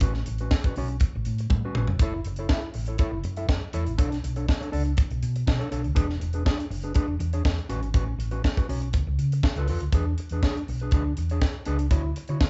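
Sultry and glamorous, this disco cut from a longer piece moves at 121 BPM in a straight 4/4, with a clean, dark-toned, fingered electric guitar accompanying through chords like A69, F#m7, Bm9 and E7 over a round, amped hollow-body bass played with the fingers. A tight funk drum kit with a high-tuned snare and tight kick sits up front alongside the bass, and it drops a short fill at 1.5 seconds before the harmony shifts to F#m7. The band sounds like it is playing live together in one small room with light reverb and a soft, rolled-off top end, and a new section arrives at 9.9 seconds, moving through E7 to Dmaj9.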